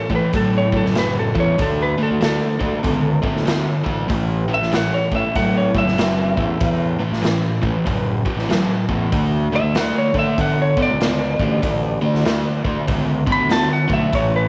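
Swung 4/4 at 96 BPM drives this gritty blues rock power trio excerpt with a southern rock edge, where a double-tracked, up-front fuzz guitar riff and a growly fingered bass move through A5 and D5 power chords over a raw garage drum kit with a punchy kick and rolled-off top, while a slightly broken-up lead guitar carries the melody through slapback echo, all set in moderate spring reverb and small room ambience.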